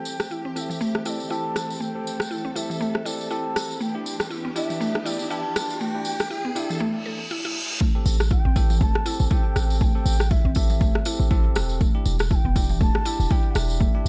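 An airy bansuri melody with vibrato floats over lush bowed strings with sampler grit and pumping, bell-like tine electric piano stabs under a filter sweep, a jingly tambourine, an overdriven rim click and a woody, chorused mallet pluck arpeggio as a riser and reverse cymbal build tension, until at 7.8 seconds a punchy, up-front kick drops in, joined moments later by a deep, boomy 808-style bass over Am7 and Em7, launching the drop of this earthy, hypnotic, swung 120 BPM afro house excerpt in A minor.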